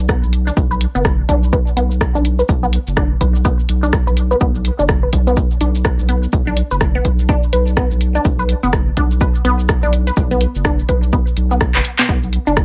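Minimal techno at 125 BPM in B minor, with a quirky, sparse mood and a 60% swing on the sixteenths. This short cut from a longer piece opens on a deep, thick sub bass that sits up front, saturated and sustained between F#1 and B1, pumping under a sidechain. An electronic kick drum with a punchy, tape-warm analog tone holds the floor, while a drum machine adds handclaps, hi-hat, rim click and shaker. Over this, a resonant blip pluck plays a juicy, squelchy riff between B3 and B4, its detuned sawtooth body carrying a noise layer and a sub octave, dressed in phaser and dub echo and swept through a filter for the full 12.6 seconds. A drum fill arrives at 11.7 seconds, and the nearly dry mix keeps every part close.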